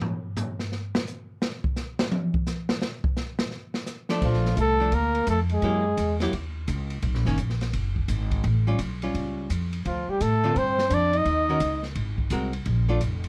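Close, detailed microphones and a light reverb give this small-group swing and bop recording an intimate, present sound. An open jazz drum kit plays alone for the first 4.1 seconds, its dark cymbals, medium-tuned snare and boomy kick sitting up front with a rolled-off top. Then the band enters: a woody, thumpy upright bass on gut strings, a clean, picked hollow-body archtop guitar in accompaniment, and a close-miked flugelhorn carrying the melody over a veiled, bucket-muted trombone on the second line. The trombone sounds distant and roomy, with vibrato, soft attacks and scooped notes, and the two horns play brief phrases that return around 9.9 seconds. Rich jazz harmony, moving from major sevenths to altered dominants, keeps the swinging, warm mood buoyant until the passage is cut off mid-piece.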